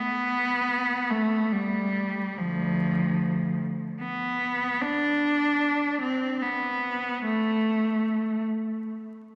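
Freely bending rubato in a three-four pulse shapes this short classical fragment for a single unaccompanied cello, yearning and lonely in mood. The rich, bowed cello sits close and up front with a smooth, even tone and vibrato, playing alone from the start until 8.4 seconds, its sound ringing on afterward in a long, wet church reverb. A vinyl crackle runs beneath this brief passage, cut from a longer piece.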